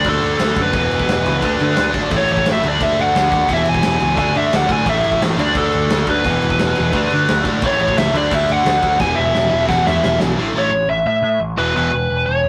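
A rough rehearsal-room recording with light reverb carries this rowdy, rebellious punk rock fragment at 174 BPM in 4/4, where a biting, overdriven lead guitar sits up front with the melody over a tight distorted guitar riff and a crunchy overdriven guitar riff further back, a growling overdriven bass plays underneath, and a big, dark acoustic drum kit with a punchy kick drives a fill from 9.0 seconds before dropping out at 10.3 seconds as the music shifts into half time at 10.4 seconds.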